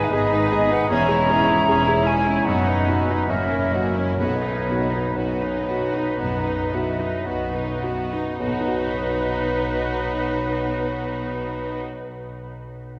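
A lyrical, lush romantic movement in B major opens with a polished grand piano carrying the melody alongside a very quiet, dark violin section, while a hollow flute, a distant oboe, a clarinet and a clear second violin section weave supporting lines, and violas, a bassoon and soft horn chords fill out the accompaniment over rich cellos and double basses. The slow, rubato 4/4 pulse of 51-78 BPM slows through the opening phrase, and very quiet timpani struck with soft mallets enter at 4.2 s as the harmony settles onto B. The orchestra falls away at 11.8 s, leaving the piano to ring alone into a long cathedral reverb until 13.0 s in this fragment of a longer piece.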